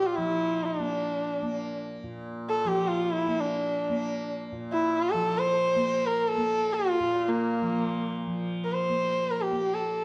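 A bowed sarangi and a softly plucked tanpura sound together from the start of this serene, devotional Hindustani classical excerpt in free time on raga yaman in Bb, the sarangi up close and expressive with gliding portamento, light vibrato and ringing sympathetic strings between Bb3 and C5, above the tanpura's mellow, buzzing, shimmering drone, all set in a moderate recital-hall reverb with a dark, warm production.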